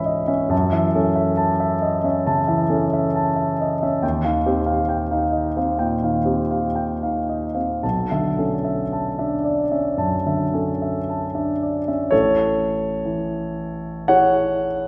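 Rubato 4/4 drifting between 54 and 71 BPM carries this serene, luminous impressionist solo piano fragment, cut from a longer piece, where an intimate grand piano with audible action noise and long sustain sits up front across a range from A1 to B5, moving through C#m7, F#m7, D#69 and Bm11 before settling onto Amaj7 at 12.1 s, all bathed in a wet, distant scoring-stage reverb whose top end is softly rounded off.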